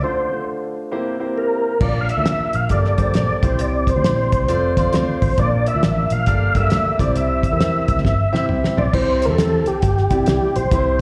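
Joyful and warm, this short cut from a longer 1960s-style soul piece swings its eighth notes in 4/4. A clear, lightly overdriven tonewheel organ carries the melody up front, with key click, chorus vibrato, a slow rotary speaker and slapback echo. A polished grand piano with long sustain plays the accompaniment, also treated with slapback. Organ and piano open the break together until 1.8 seconds, when a foam-muted, round, punchy electric bass and a cloth-damped drum kit enter. The kit sounds dry and dark, with a fat snare, tight kick, toms, hi-hat and crash cymbal, set up front with a rolled-off top and its own slapback. Drums and piano both play fills from 8.0 to 8.9 seconds, and the recording feels like a live gig heard through the venue's PA, with cassette tape character and recital hall reverb.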